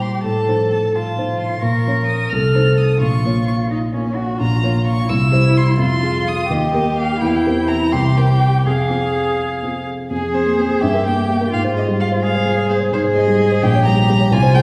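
Classical-period piano trio movement in 6/8, restless and stormy, moving quickly at 86 BPM in dotted quarters, opening in Bb minor and shifting to F minor at 4.4 s, with a new section arriving at 10.1 s in this fragment of a longer piece. A smooth, vibrato-laden violin carries the melody high above a rich cello second line, bowed with soft attacks, expressive portamento and an up-front presence. Beneath them the loudest part, a dark, mellow baby grand with vintage intimacy and audible action noise, supplies the accompaniment, all heard from further back in a wet concert hall.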